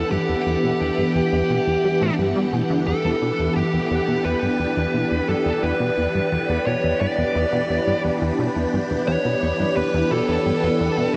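A straight 4/4 pulse at 87 BPM carries this hypnotic, mysterious stretch of sequencer-driven ambient space music in E minor, where a punchy, funky analog bass riff with a wave-folded, ring-modulated filter pluck, chorus and delay sits under swirling, vintage string-machine chords that warble through phaser and chorus on a held Em7, while a dark, distorted high-gain lead guitar picks an up-front melody through analog delay, all bathed in a huge, dreamy reverb with a 7.9-second tail.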